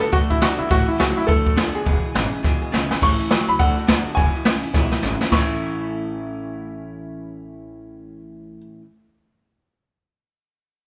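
Rockabilly at a rowdy, rollicking 208 BPM in A major, this short excerpt cut from a longer piece swings its eighth notes as a band plays live together in one room with light reverb. A slightly detuned upright piano carries the melody, its woody tone, short sustain and audible action noise giving it an intimate, close feel. An electric guitar through a small old amp plays a twangy, slightly broken-up riff, while a bright picked steel-string acoustic guitar picks out accompaniment in the background beneath a thumpy, gut-strung upright bass played pizzicato. Up front, a jazz kit played with brushes brings dark cymbals, a medium-tuned snare and a boomy kick, dropping fills at 2.4 and 4.7 seconds before falling away at 5.4 seconds. The chords move from D through A and E, settling on A at 5.3 seconds as the remaining instruments carry on to the cut.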